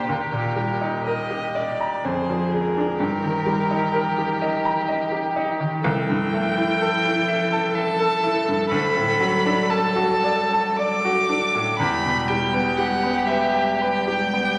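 A wet recital-hall reverb surrounds this tender, serene fragment of a slow romantic movement for piano quartet, played in a flexible rubato 3/4 at around 54-64 BPM, tuned to A4 = 443 Hz, with harmony moving from Eb through Bb7/F and Am7/C to D and Em. Up front, a bright, brilliant baby grand piano carries the accompaniment, while a rich, focused solo violin sings the melody with vibrato and a smooth top. Beneath them a second violin adds a distant, expressive line with vibrato and portamento, and a cello in the background plays a soft-edged, airy sul tasto part, warm and intimate, through to 14.6 seconds.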